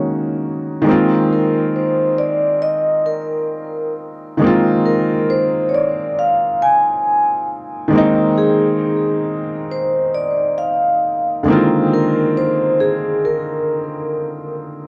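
A felt-muted upright piano opens this cosy, mellow hip hop excerpt, its soft, intimate tone sitting up front with audible action noise and a thin felt character, coloured by cassette tape. At 1.3 seconds a vibraphone played with soft mallets enters to carry the melody, metallic and ringing yet airy, with a slow motor vibrato and a tape echo trailing its notes. The groove moves at a relaxed 68 BPM in 4/4, with a 62% swing on the sixteenths giving it a lazy, loping feel. Harmony moves from Ab9sus4 to Bb9sus4, keeping the mood suspended and gentle. A moderate plate reverb and an overall cassette tape sheen wrap the two parts in a hazy, lo-fi glow.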